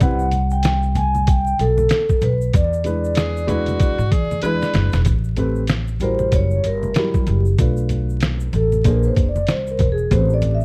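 A gritty, pitched-down sampler-style drum kit with a thumpy kick and a woody pizzicato upright bass sit up front from the start of this nocturnal, smoky jazz-hop excerpt. A soft-mallet vibraphone carries the melody with slow motor vibrato, while dark, mellow concert grand piano chords provide accompaniment and egg shaker and congas fill in the background. A breathy tenor saxophone with subtone and scooped notes adds a brief second line from 3.2 to 5.0 seconds, and after a drum fill the vibraphone takes a solo from 5.1 seconds, all within a dry, close 1970s-style studio sound with small room ambience and vinyl crackle.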